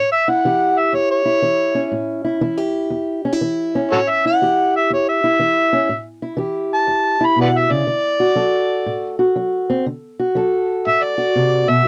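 A dry, close studio sound in a 1970s style, touched with light reverb, frames this rollicking, gritty piece of acoustic country blues, cut from a longer performance. It moves at 121 BPM in 4/4 with a swung eighth-note feel, sitting in A mixolydian with tuning slightly under standard at A4 = 439 Hz. An amplified, overdriven harmonica carries the melody up front from start to finish, its tone warm and gritty, shaded with light vibrato, tongue slaps and scooped notes in a jazz-inflected solo style. Beneath it, a fingerpicked steel-string parlour guitar plays accompaniment, also up front, with a dark, boxy body and the occasional finger squeak. The harmony rests on A7 before shifting to D at 7.9 seconds.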